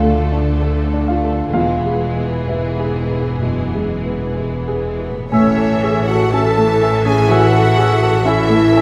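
A polished, up-front grand piano carries the melody from the start over lush, expressive violins, a smooth second violin line, vibrato-rich violas, distant cellos and soft-topped double basses in this lush, lyrical romantic movement for piano and orchestra in A major, drifting with rubato at 59-69 BPM through D minor and E before settling on A at 5.3 seconds, where a clear oboe, a pure straight-toned flute, a warm clarinet, a very quiet punchy bassoon and mellow, roomy French horns join in, all bathed in a wet scoring-stage reverb in this short fragment of a longer piece.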